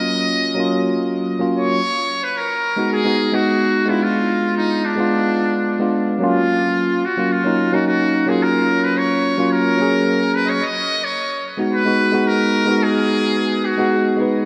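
Chillout with a warm, relaxed mood, this excerpt sets a solo trumpet with a metal mute, bright and buzzy with light vibrato and a classical bearing, over a clean tine electric piano played through a combo amp and treated with tape echo. The trumpet melody is wrapped in a diffuse ambient delay, and both parts sit up front in a dreamy mix soaked in a lush hall reverb. The harmony drifts through minor ninth, eleventh and diminished chords, and the trumpet drops out at 14.2 seconds while the piano carries on to 14.5.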